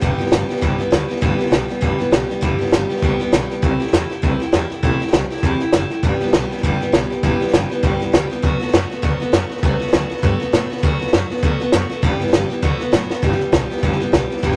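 A moderate club reverb gives this short rockabilly excerpt the feel of a small live room, with the guitar and the compact cocktail drum kit sitting up front. The mood is rollicking and retro, driven at a brisk 200 BPM in 4/4 with a light swing on the eighth notes, in G major. A bright, full-bodied steel-string dreadnought carries the accompaniment with a picked part from G2 to G4, and the finger squeak on its strings is audible. Beneath it, a pizzicato upright bass with gut strings supplies a woody, thumpy low end that stays dark, moving between E1 and A2. The drums are dry and natural, with a high-tuned snare, a tight kick and hi-hat, and a drum fill at 13.1 s leads into a new section at 13.2 s. The harmony cycles through sixth chords on G, C and D, returning to G6 as the clip cuts off at 14.6 s.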